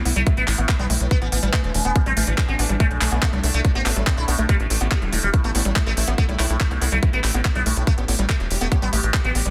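Intense and driving, this psychedelic trance excerpt runs at 142 BPM in 4/4 with a straight feel, sitting in A minor over a single A5 chord. A garage drum kit with crisp hi-hats and handclaps enters at 0.1 seconds, its snare softly clipped, and a tight electronic kick follows up front from 0.3 seconds, both kits carrying a tape-warm tone and the air of a large room. Beneath them, a punchy sequencer bass built from sawtooth and square waves drives the low end with a fast-attack filter pluck and a moving notch. A buzzing, plectrum-plucked sitar carries the melody with shimmering sympathetic strings, treated with phaser, delay and sidechain pumping. In the background, a woody wave-folded pluck repeats a percussive riff through chorus and digital delay, while a bright, pulsing gated texture holds sustained chords with slow attack, chorus, reverb and gritty 12-bit sampler character. The whole sits in digital ambience under a dense, heavily limited modern master.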